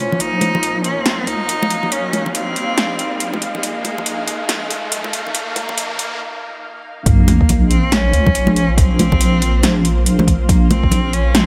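Deep dubstep in Bb minor at 140 BPM with a half-time, swung feel, this dark and heavy excerpt from a longer piece opens as a build-up. A clear, focused bowed cello carries the melody with vibrato, trailed by dub echo, over a blurred, evolving granular pad whose detuned sine and sawtooth layers bloom slowly through its own reverb. Beneath them a deep, soft wobble bass with chorus sits up front, saturated and compressed, while hard-handed congas play close and dry and a deep house kit adds a punchy snare and metallic hats with overdrive. An electronic riser climbs until 6.2 seconds, leading to a short break before the drop lands at 7.1 seconds on a Bbmadd9 chord with an impact and sub drop. There an overdriven electronic kick enters, deepening the low end until 10.9 seconds, and a light reverb with a high-pass filter shapes the overall sound.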